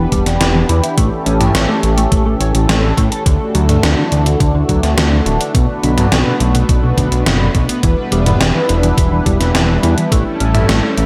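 A straight, driving synthwave groove is set by a thumpy, overdriven electronic kick and an up-front, gated 80s drum machine whose hi-hat, toms and gated-reverb snare ring out in a large room, giving this short nocturnal excerpt its push. Underneath, a fat, detuned sawtooth bass with a filter sweep pumps against the beat, while a smooth analog pad with a soft attack, chorus and a moving notch holds sustained chords that pump as well, cycling through Em7, A7, Dadd9 and Bm7. Tucked in the background, a dark, clean, fingered electric guitar plays a compressed riff coloured by analog chorus and digital delay, all within a light reverb.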